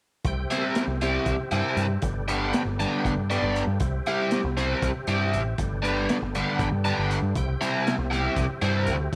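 A deep, round dub bass and a gritty, saturated breakbeat kit with a punchy kick and high-tuned snare open this hypnotic, trippy psychedelic rock cut at 0.2 s, driving a straight 7/8 groove at 236 BPM in eighths in C major. A mellow, clicky tonewheel organ follows at 0.3 s, holding sustained chords in the background through chorus vibrato and a fast rotary speaker, and an up-front, double-tracked overdriven guitar riff with flanger enters at 0.5 s. The harmony alternates between C and Gadd9 in a small, lightly reverberant room.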